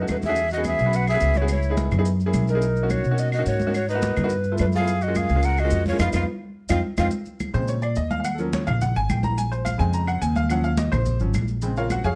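A straight, driving 4/4 groove anchors this fiery, sophisticated Afro-Cuban jazz excerpt. Ringing, medium-tuned congas are struck with hard hands in a live room, while compressed, saturated claves sit in the background and grainy maracas sound close and dry. A pizzicato upright bass with steel strings stands up front with a woody tone. In the opening section a hollow tenor recorder carries the melody with vibrato and a crisp, chiffy attack, and a reedy metal jazz flute adds a breathy, straight-toned second line beneath it. A bright upright piano accompanies throughout, brilliant and slightly detuned. After a band accent at 6.0 s and a piano fill at 6.6 s, the recorder and flute stop at 7.1 s and the piano takes a solo. The production is dark, with light reverb.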